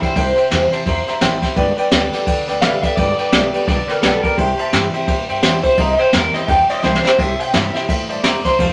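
Rollicking and retro, this swung rockabilly excerpt is led by a twangy, slightly broken-up electric guitar through a small old amp, soloing with a phaser from the start until 7.2 seconds. A jangly tack piano drops in a honky-tonk fill at 1.0 seconds, while a bright, full-bodied picked steel-string acoustic guitar sits in the background and a woody, thumpy pizzicato upright bass holds down the low end. Up front, a jazz brush drum kit with dark cymbals, a high-tuned snare and a boomy kick plays a fill at 6.8 seconds, all in a light reverb.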